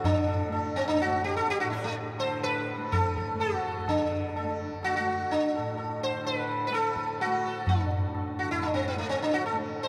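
A long cathedral reverb, lingering about 6.2 seconds in a church-like hall, surrounds this introspective, solemn Hindustani classical fragment in raga Bageshri on A, tuned to A4 = 442 Hz, moving at 126 BPM in a straight 4/4. Up front, a plectrum-plucked sitar carries the melody from A3 to C5 with a buzzing, shimmering tone and sympathetic strings. A softly plucked tanpura sits lower in the mix as a warm, buzzing drone, while a close, high-tuned tabla rings out, and the music moves into a new section at 3.9 seconds.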